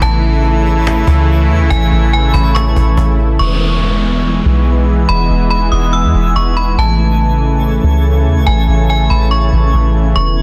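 Floating and dreamy, this atmospheric cloud-rap fragment moves at a half-time pace, with a bright, airy sawtooth pad sustaining chords up front beside a deep, round 808-style bass. A metallic, inharmonic FM bell rings out the melody through chorus, low-pass filtering and tape echo, while a twinkling granular texture sparkles faintly in the background. A woody cajon played with soft hands sits in the background until 3.2 s, and an electronic downlifter runs from 3.4 to 6.8 s as the chords shift from Amaj7 to Emaj7, all within a dense, heavily limited modern master.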